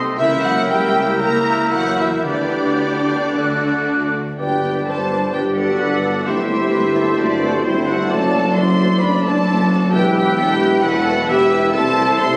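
A dramatic, restless classical excerpt for symphony orchestra moves at a fast romantic pace of 110-133 BPM in G major, its 4/4 pulse pulled about by rubato. A lush, vibrato-laden violin section carries the melody from 0.2 seconds, set back in the mix, while a second, richer and more distant violin section joins a clear solo oboe, a vintage-toned clarinet and an airy, hollow flute group on supporting lines. A ringing, thumb-plucked concert harp spreads arpeggios across its range, over a smooth cello section and a double bass section bowing with portamento. A very quiet but intense viola section fills in accompaniment, and a warm French horn section holds sustained chords. At 4.4 seconds a mellow trumpet section adds stabs and a roomy tuba deepens the bass as the harmony moves from G through Am7/G and D/F# to Em. The whole is bathed in a wet scoring-stage reverb, heard as if captured on a phone in a club-like room.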